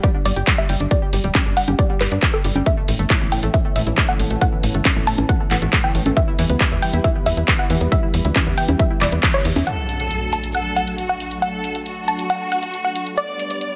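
Uplifting and euphoric, this short excerpt of trance drives forward at 137 BPM in 4/4 with a straight feel, set in D major. An overdriven, up-front electronic kick and a punchy analog drum machine with tape-warm congas, handclaps and hi-hat, heard in a large room, push the groove. A tight sawtooth sequencer bass with a fast attack joins at 0.3 seconds, pumping against the kick, while a detuned, wave-folded unison pluck carries the melody and a round analog pluck with chorus and delay spins arpeggios beneath it. At 2.7 seconds a thick, warbling pad with slow attack and long release spreads sustained chords, moving from Aadd9 to Em and on to D. A band accent at 9.2 seconds sets up a new passage at 9.7 seconds, where an electronic impact hits, a filter sweep moves across the pluck, and a rich, bowed violin section with vibrato and tape echo enters as a second line. Light reverb and digital ambience give the mix a polished, airy finish.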